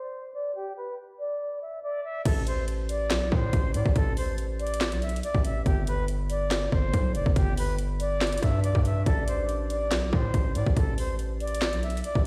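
This menacing, dark hip hop and trap cut, taken from a longer piece, moves with a half-time feel. A distant, airy silver concert flute carries the melody from the very start, its vibrato and tongued notes trailing into delay while a filter sweep colours the opening moments. At 2.3 seconds a trap drum kit and a distorted 808-style bass arrive up front: a hard-clipped kick, sharp snare, metallic hi-hats, handclaps and crash cymbal over a saturated, aggressive low end with a gritty noise layer. The harmony shifts from A minor to a G power chord and back. Around 9.1 seconds a soft, mellow, octave-layered synth lead adds a brief, round second line touched with chorus and delay. The mix sounds dry, as if played through a big sound system in a bare stone room, with a low-pass filter dulling the top end.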